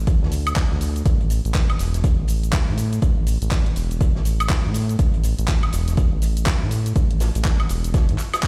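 A punchy electronic kick drum sits up front through this short late-night deep house clip, arriving at 0.1 seconds and carrying a layered, produced character in a steady 4/4 metre. Alongside it, a round analog bass built from sawtooth, sine and triangle tones moves between E1 and A2 with a fast attack and sustained, dark body, pumping through sidechain compression. A layered electronic kit adds cabasa, handclaps, hi-hat and woodblock, giving the smooth groove a swung sixteenth-note feel. Far in the background, an acoustic jazz kit contributes filtered hi-hat and a medium-tuned snare with a rolled-off, mellow top. The whole mix sounds as if played over a big sound system in a bare room, with stone reverb lending a hard, reflective ambience.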